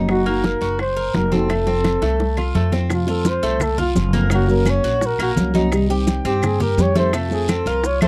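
A danceable, nostalgic excerpt of Cuban son and guajira at 170 BPM, where a dark, veiled bucket-muted trumpet with light vibrato and scooped notes takes a jazz-style solo from 2.9 seconds over a growly, thumpy pizzicato upright bass, thumb-plucked nylon-string guitar, metallic double-string tres arpeggios, ringing congas, round low-tuned bongos, woody claves, a raspy saturated guiro and grainy maracas that join at 2.9 seconds, all in a dry, close 1970s-style studio sound.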